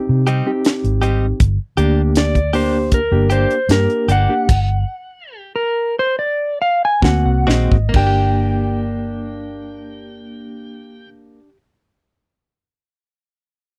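Straight-eighth soul blues in G harmonic minor, brooding and smoky, moving at 64-80 BPM in 4/4 and slowing down between 1.4 and 7.9 seconds. A reedy electric piano with medium tremolo carries the accompaniment from the start, joined by a dark, foam-muted fingered bass that sits round and punchy up front, while a clean, direct-recorded electric guitar adds compressed, picked stabs. A tight funk kit with bright cymbals, a high-tuned snare and a tight kick drives the groove until 8.2 seconds. From 2.2 seconds a clean lap steel takes the melody with slide, volume swells and slapback echo, its tone warm. The harmony moves through Cm, Gm, Gmaj7(no3) and Ab7, and during a stop from 4.5 to 7.0 seconds the electric piano begins a fill at 6.6 seconds, followed by a drum fill from 7.0 seconds, leading into a new section over Gm at 7.9 seconds. It is all captured in a dry, close 1970s-style studio sound in this brief cut from a longer piece.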